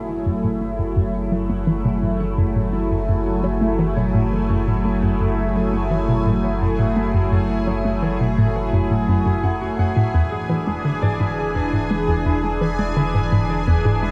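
A swirling, up-front phased analog pad opens this mysterious, cosmic stretch of ambient space music alongside a deep, round analog bass, while a ringing, thumb-plucked Celtic harp and a bubbling, resonant stepped-filter texture fade in behind them, and from 0.3 seconds a hollow, bouncy square-wave pluck with cassette-tape character and delay drives a mellow sequenced riff, all bathed in a huge, dark reverb as the chords move from F#m7 to E7 at 10.1 seconds.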